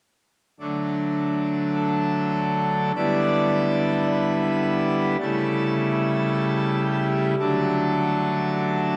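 A full pipe organ enters alone at 0.6 s with a brilliant, majestic chord of D major, its mixtures and romantic voicing sitting up front as a serene classical chorale unfolds in 4/4 at a slow, rubato 48-55 BPM. The harmony moves from D through Em7/D and A7/C# before settling back on D at 7.4 s, the organ spanning C#3 to D5. A wet cathedral reverb with a 6.0-second tail and dark production surround this brief passage, which is cut from a longer piece.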